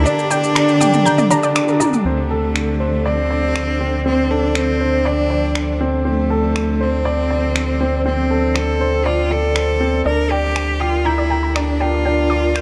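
Intimate and moving, this piano-and-strings electronica piece is cut from a longer work and rides a straight 4/4 pulse. A bright, biting solo cello carries the melody up front with intense vibrato. A dark chamber string section holds soft-attacked sustained chords underneath, bowed sul tasto. A clear, woody upright piano plays a riff with audible action noise and long sustain, touched by delay, and a round analog bass sits deep and up front on a single low note. An overdriven, organic electronic drum kit of finger snaps, shaker and toms comes in at 0.1 seconds through an opening break that closes with a fill, while a warbly, lo-fi detuned pluck adds background arpeggios with chorus and delay, dropping out at 1.9 seconds and returning at 10.1 seconds. The dark production blends a lush hall reverb with a small room, and the harmony moves from Gm/D to Dm7 and back to Gm/D.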